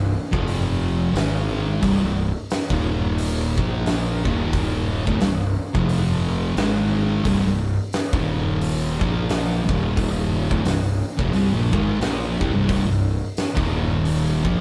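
Recorded live in one room with moderate reverb and some lossy compression artefacts, this ominous, brooding stoner and doom metal fragment, cut from a longer piece, moves at 88 BPM in 4/4 with swung eighths in C minor. Two thick fuzz guitars play the riff: one dark and up front, the other warm and sitting in the background. A growly, bright, punchy fingered bass with overdrive plays alongside them, and an oversized low-tuned drum kit enters at 0.3 s with a boomy kick, fat snare, hi-hat and a gritty, saturated, pumping room sound, as power chords cycle through F5, Ab5, C5, Eb5 and Bb5 before reaching C minor at 10.5 s.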